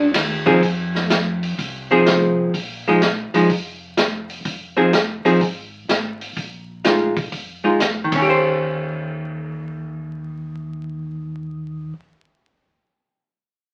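Heard through the crackle of a very old 78 rpm record and a wet studio reverb, this bluesy, soulful soul jazz organ trio fragment swings over an Fm7 to Bb7sus4 vamp that settles on Eb at 8.0 seconds. A mellow, round tonewheel organ with key click and a slow rotary speaker carries the bass line, while a hollow-body archtop guitar, clean and picked, sits up front as the loudest part, playing accompaniment. The gritty, saturated vintage drum kit, with dark cymbals and a tight kick, plays until 8.2 seconds, leaving organ and guitar to carry the closing seconds.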